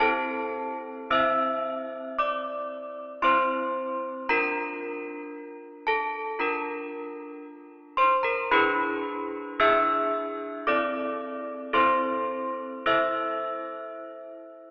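Heard through a thin, telephone-like sound in a church's wet reverb, this wintry, solemn classical tune for handbells in A minor moves at a slow 56 BPM with uneven beats, as solo desk bells, clear, clanky, slightly out of tune and up front, ring from C4 to E6 through the full 14.7 seconds over chords from Am/C through Bb/D and E7/D before settling on Am/E, in a short cut from a longer piece.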